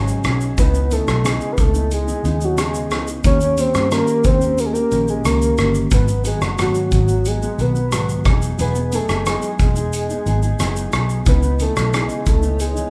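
A lightly reverberant, live-in-one-room sound frames this wistful, lonely bedroom-pop excerpt, where a soft octave-layered synth lead with chorus and tremolo carries the melody from 0.6 seconds over a dark, clean electric guitar with vibrato, a round, foam-muted vintage fingered bass, and a distant, roomy indie drum kit with a punchy kick, rim click and shaker, while a very quiet, blurred granular cloud pad appears only at the opening and again near the close at 12.5 seconds.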